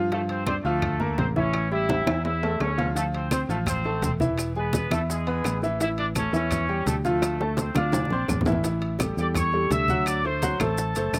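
A clear baby grand piano and a dark, round fingered electric bass open this fiery, passionate salsa passage, with the piano's intimate tone carrying audible action noise and the punchy bass sitting up front. Almost at once a bright, tight trumpet section takes the melody, its vintage pop-style sound colored by a light vibrato and a slapback echo. Behind them, a percussion bed of thick-skinned, low-tuned congas, soft-handed bongos with their own slapback echo, and ringing metal-shell timbales fills out the groove, joined by woody, dry claves and, from 3.0 seconds, grainy, saturated maracas. Drum fills arrive at 1.9 seconds and again later, and the harmony moves through extended minor and dominant chords such as Gm11, A7 and Dm9 before a new section begins at 8.6 seconds and lands on D7. The sound is open-air and close, with little reverb, and the passage is cut from a longer piece.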